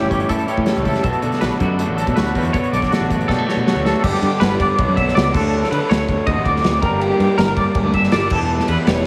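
A big arena sound bathed in lush hall reverb frames this playful, intricate math rock and midwest emo cut at 161 BPM in 4/4, where a clean, warm twelve-string electric guitar with lush chorus and slapback echo sits in the background until 5.5 seconds, a bright, twangy guitar spins tremolo-tinged arpeggios, a double-tracked garage guitar drives an overdriven riff, a growling picked bass adds gritty low end, and a loose, up-front indie drum kit with a punchy kick and pumping room sound marks a fill from 3.3 seconds as the chords move from A7 and Bm9 into a second section through Dmaj7, D7b9, Gm and Em.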